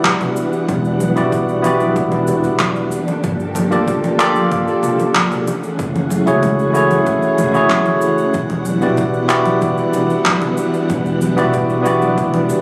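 Smooth and wistful, this sunset chillout groove in 4/4 is cut from a longer piece, featuring a bright, barky tine electric piano up front with digital delay, over a silky string machine whose slow-attack chords shimmer with ensemble chorus through Em9, Gm9 and F#m9. Overdriven electronic handclaps, cabasa and congas drive the rhythm, while a punchy electronic kick and vintage, band-limited acoustic congas sit further back. A woody pizzicato upright bass joins at 0.7 seconds, and the whole is heard through a phone in a lush hall, compressed and washed in club reverb.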